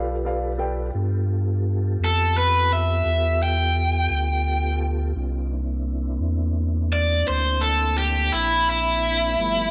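Soulful and laid-back, this slow blues moves at 57 BPM in a straight 12/8 feel, centered on G mixolydian and cut from a longer piece. A dark grand piano, intimate and up front with audible action noise, opens with a brief accompaniment figure that stops at 0.9 s. Beneath it, a mellow tonewheel organ holds soft, flute-like sustained chords through a slow rotary speaker and chorus vibrato, while a pure sine sub bass sits deep and smooth in the low end. An overdriven electric guitar, bright and picked with spring reverb, takes the melody and enters at 2.0 s, carrying the solo to the end. The harmony rests on G9 before shifting to C9 at 5.2 s, all set in a light digital ambience.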